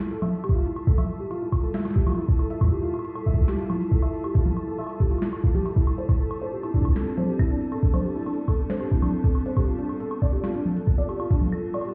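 This IDM excerpt sounds muffled, as if heard through a wall, set in a stone room's reverb. At 138 BPM in F lydian, it pairs an icy, crystalline glass pad on sustained chords with felt-muted upright piano arpeggios, while a flickering, grainy granular texture sits in the background. A booming analog drum machine with crisp snare, metallic hats, toms and woodblock carries digital delay, and an overdriven electronic kick sits up front from 0.5 seconds, giving the intricate, playful piece its push as the harmony moves from Fmaj9 through Am11 to G9.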